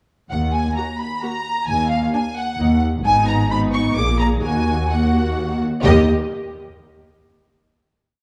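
In a brisk, straight three-beat metre, this short, complete movement for string orchestra in classical-period style feels restless and stormy. A lush violin section carries the melody with smooth, even vibrato, while a second violin section sits in the background with a focused tone, doubling the tune in unison and in sixths. The viola section joins at 0.8 seconds with after-beat chords, chords in the rhythm of the tune and sustained chords, its top kept silky. Underneath, a rich, somewhat distant cello section places bass notes on the beats and holds sustained bass, and the double bass section doubles that line with expressive vibrato. The harmony moves through minor chords and a dominant seventh, breaks off briefly at 1.7 seconds, and lands on a final major chord at 5.8 seconds, the whole ensemble set in a moderate scoring-stage reverb with a dark, warm production.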